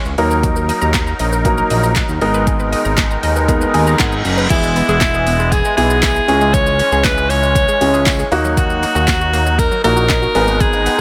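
A breathy, edgy alto saxophone carries the melody from 4.5 seconds, up front and echoed by digital delay, with scooped notes in a pop style. This is a bittersweet, energetic dance-pop excerpt in G# minor at 118 BPM, moving from D#m and G#madd9 into E and C#m once the saxophone arrives. Underneath, a fat, saturated analog bass and a deep house drum kit with a deep kick, punchy snare, dark hats, handclaps, shaker and crash drive a straight 4/4 groove, while a quiet, jingly tambourine joins the saxophone. A polished baby grand piano and a reedy, shimmering musette accordion supply the chords, pumping with the sidechain along with the bass and a lush, detuned unison pluck that plays arpeggios in the background through a delay. A piano fill at 3.5 seconds and an electronic reverse cymbal at 3.7 seconds lead into the saxophone's entrance, all set in a light reverb.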